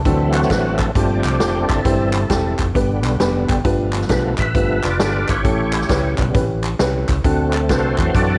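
Soulful and reverent, this short uptempo gospel cut swings, with a gritty, overdriven tonewheel organ up front carrying a solo across the whole clip, its key click and chorus vibrato turning through a slow rotary speaker. Beneath it, a dark, woody upright piano with audible action noise slips in a fill at 3.0 seconds, while a round, punchy fingered electric bass and a big-band drum kit with a punchy kick and medium-tuned snare drive the groove. Crisp group handclaps sit lower in the mix, and light reverb with small room ambience frames the band as the chords move from D7 through G and A7 back to D7.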